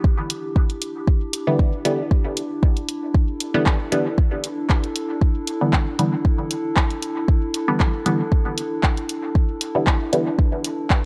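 Cavernous and hypnotic, this dub techno excerpt at 116 BPM in E minor rests on a single Em7 chord, with a deep, layered electronic kick up front, a punchy analog drum machine adding handclaps and hi-hat through dub echo from 0.3 s, a muted sawtooth chord stab with a filter pluck, chorus, phaser, sidechain pumping and dub echo entering at 1.5 s, and a dark, warbling lo-fi pad of slow-attack sustained chords with chorus, built-in reverb and pumping beneath, heard through a dry, gritty cassette-tape recording with light reverb.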